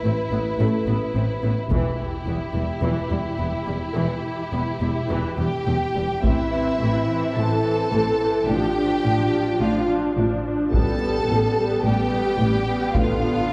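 Heavy-stick taiko hits punctuate this dark, relentless cinematic orchestral film cue in A minor at 107 BPM, first landing at 1.7 s in the opening build-up and returning at 6.2 s as mellow, distant French horns add sustained chords, while a lush, smooth-topped violin section carries the melody over a clear, up-front second violin line, expressive violas with portamento, rich, even cellos and biting double basses, the strings sitting in a concert-hall reverb heard from further back in the room.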